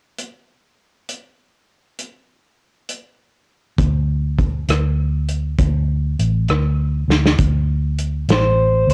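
A slow, straight-feel 12/8 blues at 67 BPM opens with a natural country drum kit alone, its punchy kick, medium-tuned snare, rim click and hi-hat carrying a cassette-tape grit, before a dark, round, foam-muted fingered electric bass joins at 3.8 seconds over a D5 chord. A drum fill at 7.1 seconds leads into a brief entry from an electric guitar through a small old amp, slightly broken-up and compressed, picking between C5 and D5 from 8.3 seconds. The mood is rollicking and gritty, with each part up front in a dry home cassette recording, cut from a longer piece.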